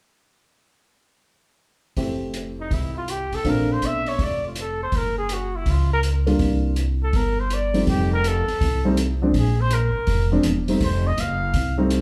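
Playful and warm, this small-group swing and bop jazz excerpt moves at 163 BPM in 4/4 with a swung eighth-note feel, shifting from F major to F mixolydian at 7.9 seconds. A baby grand piano with audible action noise and short sustain supports a trumpet melody that enters at 2.6 seconds with light vibrato and a roomy tone. A woody, thumpy pizzicato upright bass on gut strings sits up front, and an open jazz kit of hi-hat and boomy kick sounds dark and smooth with a rolled-off top, the band playing live together in a large studio with moderate reverb.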